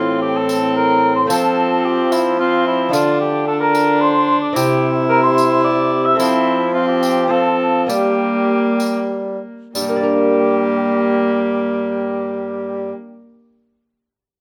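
A bowed viola with a reedy, gut-string tone sits up front in this courtly, solemn renaissance-style consort dance in three, sharing the foreground with a solo bassoon whose soft attack anchors the bass. Higher up, a hollow wooden baroque flute carries the melody with pure, tongued notes and vibrato, though it sounds distant and tucked into the background. A mellow cor anglais adds a second line from a roomy distance. A delicate fingerpicked lute with double strings, some doubled at the octave, fills in the accompaniment, and a jingly tambourine joins at 0.5 seconds and drops away by 10.1 seconds. The music slows from 5.4 seconds before moving into a new section, and this cut from a longer piece is heard through close, detailed microphones with light reverb.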